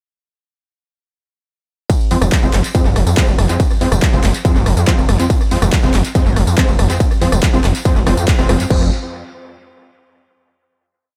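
Industrial and relentless, this short piece of driving peak-time techno drops at 1.9 seconds into a distorted, overdriven four-on-the-floor kick and tape-warm analog drum machine hats, claps, rim, tambourine, ride and crash. A gritty sawtooth bass joins at 2.2 seconds, rolling in a staccato groove, and the hats, cymbals, percussion and bass all pump against the kick. A squelchy, screaming acid line with accents and slides sits in the background beside bright, thick detuned rave stabs playing dotted-rhythm chords moved in parallel, with tape echo trailing through a dry, echo-heavy mix. The band hits an accent at 8.3 seconds before a final chord rings out from 8.7 seconds.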